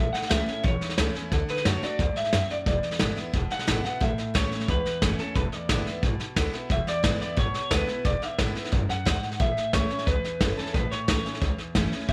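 Rockabilly at a quick 178 BPM in 4/4 with a straight feel, this upbeat, rollicking cut from a longer piece sits in A major with tuning pitched slightly sharp at A4 = 445 Hz. An electric guitar through a small old amp carries the melody between A4 and F#5, its tone twangy, bright and slightly broken-up, with a lo-fi edge, subtle chorus and tape echo. Beneath it, a picked steel-string acoustic guitar fills out the accompaniment with a full-bodied dreadnought sound, fresh strings and audible finger squeak, while a pizzicato upright bass on gut strings adds a woody, thumpy low end down to E1. A vintage brush drum kit enters at 0.1 seconds and sits up front, with a punchy kick, medium-tuned snare and hi-hat heard through a rolled-off top in a small room. The chords move from A to D to E7 in the opening section, then a second section from 4.0 seconds returns to A and E7, settling back on A at 9.4 seconds, all wrapped in light reverb and studio ambience.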